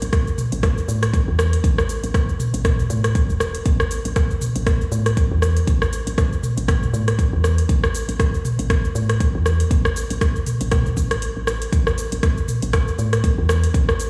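A produced afro-pop kit of cabasa, metallic hi-hats, rim click and toms opens this warm, driving afro house piece with a swung sixteenth-note feel, and a deep, layered electronic kick lands up front a split second later. Beneath them, a dark, woody FM bass with a fast attack and a soft, round, decaying tone pumps with sidechain compression, and the mix plays like a big sound system in a bare room with large studio reverb. A brief break arrives at 11.2 seconds, and the passage is cut from a longer piece.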